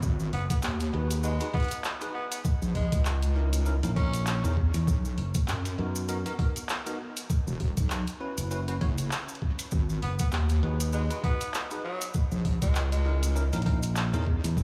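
Gritty, funky glitch hop at 99 BPM with a swung 16th feel in C# dorian, cut from a longer piece, where a thumpy, overdriven kick and a heavy, saturated wobble bass sit up front beside a punchy fingered electric bass, an electronic kit with a woody snare and bright hats, and grainy maracas, while a bell-like tine electric piano adds pumping, chorused stabs and a raspy tenor saxophone with vibrato and tape echo takes solo lines from 0.3 to 4.4 s and again from 10.0 s over chords moving from G#m7 through C#m69, Bmaj7 and F#7sus4.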